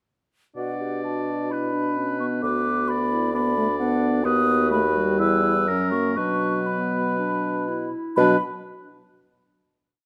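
A quick classical-period movement for wind quintet in B minor, this short complete piece feels urgent and dramatic, moving at 118-133 BPM in 4/4 with a rubato pulse. The baroque flute carries the melody with a woody, pure tone, tongued notes, vibrato and lifted highs, playing expressively high in its range. Beneath it, the warm oboe sits at a distance with soft attacks, weaving an independent second line and holding sustained chords, while the dark French horn adds light vibrato and a smooth top to its own inner line. The mellow clarinet stays in the background with soft attacks, answering at phrase ends, and the bassoon, placed up front with light vibrato, supplies sustained bass with passing notes. All five play together from 0.6 to 8.4 seconds, the harmony passing through Em and F#7 before returning to Bm, and a final chord arrives at 8.2 seconds, ringing in a moderate recital hall reverb captured by close, detailed microphones.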